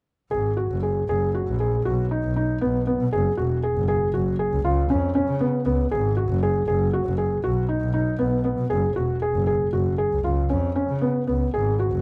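A felt-muted upright piano and a bowed double bass enter together at 0.3 s, the piano spinning soft, intimate arpeggios in a narrow middle range, its action noise audible, while the bass sings beneath with biting vibrato and an airy bow. This hypnotic, urgent contemporary chamber passage runs in 11/8 at 236 eighth-note beats per minute, circling F#add9, B, F#5 and C#7 harmonies. Light reverb and a dark, warm production keep both players up front, the bass close, in this short excerpt from a longer piece.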